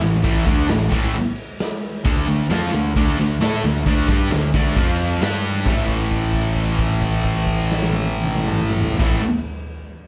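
Garage rock with a rowdy, swaggering strut at 133 BPM, this live club excerpt sets a thick, double-tracked fuzz guitar riff up front over a round, overdriven picked bass and a gritty, saturated drum kit with punchy kick and crash, a jingly tambourine sitting in the background from 2.5 to 5.9 seconds, as power chords move from A5 through D5, F5 and G5 back to A5, where a held note rings from 5.7 seconds under light reverb through the venue's PA.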